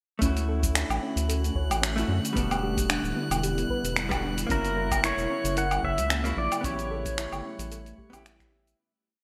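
Sunset chillout with a sunny, smooth mood, built on a light lounge groove with a gentle swing. A deep, overdriven electronic kick sits under a layered deep house kit of half-open hi-hat, finger snaps, cabasa and low woodblock, bathed in gated reverb, while a round analog bass plays an up-front syncopated riff. A dark, clean hollow-body jazz guitar adds syncopated rootless chord stabs with delay, an ethereal pad holds slow-attack chords through ensemble chorus, and a soft pluck runs an 8-step arpeggio in the background. High above, a glassy texture holds a single note with drifting overtones. At 4.5 seconds a twangy pedal steel guitar enters up front with a motif-based melody played with slide and volume swells, as the Dmaj7, Em7, F#7 and A7 progression moves beneath a lush hall reverb and bright 1980s-style digital sheen before the fade-out from 5.9 seconds.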